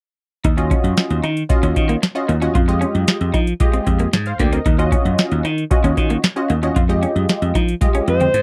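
A booming analog drum machine with a deep kick, tonal snare and metallic hats starts this late-night early-eighties boogie funk excerpt at 0.4 s, alongside a growly, punchy slap bass and a slightly broken-up, compressed electric guitar riff with analog chorus. A detuned sawtooth polysynth comp with a filter pluck and moving notch joins at 0.6 s, riding the alternating Ebm9 and Fm9 chords in a dry, close studio sound. A drum fill arrives at 7.8 s, and a breathy alto saxophone with light vibrato steps up front at 8.1 s just as the section closes.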